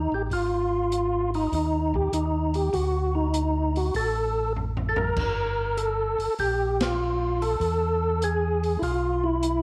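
Soulful and greasy, this short cut from a longer soul jazz organ trio piece swings its eighth notes in 4/4. A fat, lightly overdriven tonewheel organ carries the melody up front, its percussive second-harmonic attack colored by chorus vibrato, a stopped rotary speaker and a slapback echo. Underneath, a second, mellow tonewheel organ supplies a round, dark, clean bass line with audible key click and a slow rotary speaker. An open, airy, polished acoustic jazz drum kit joins at 0.3 s with dark cymbals, a medium-tuned snare and a boomy kick, adding a fill at 4.6 s before the whole band hits an accent at 6.7 s. A moderate echo chamber reverb and studio ambience give the trio a gentle sense of space.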